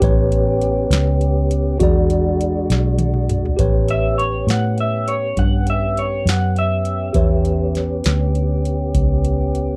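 A swaggering, soulful slow blues in a straight 12/8, cut from a longer piece, opens with a booming analog drum machine, a round, punchy fingered bass, a bright tine electric piano and a tonewheel organ all sounding together over A9 and E9 chords. The drum machine pairs a deep kick with a crisp snare, metallic hi-hats and toms, and it plays a fill just before the second section begins at 3.6 seconds. The foam-muted bass sits dark and up front. The organ holds clear, clean chords with vibrato, key click and a slow rotary speaker, while the electric piano adds bright, clean accompaniment through its built-in speakers. At 3.9 seconds an electric guitar through a small old amp steps forward with a compressed, slightly broken-up, lo-fi second line colored by analog chorus, and it drops out at 7.7 seconds. The whole recording has a dry, close 1970s-style studio sound with little reverb.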